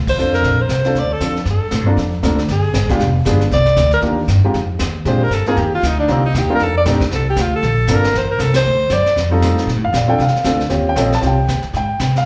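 Playful and swinging, this fast small-group jazz clip in the swing and bop vein is heard live through a club's PA, with moderate room reverb giving it a close, small-room feel. A woody, pizzicato upright bass sits up front from the first moment to 12.2 seconds, while a brush kit with dark cymbals, a high-tuned snare and a boomy kick stays lower in the mix beneath the band. The breathy alto saxophone takes the solo melody from 0.1 to 9.2 seconds, its clear subtone colored by vibrato, scooped notes and a slapback echo. A grand piano with audible action noise and short sustain supplies intimate accompaniment, also touched by slapback echo. The band hits accents together at 0.1 and 8.5 seconds, and the harmony moves through rich extended chords such as Gm11, G7b9 and Bb13 before settling toward Abmaj7 as the fragment breaks off.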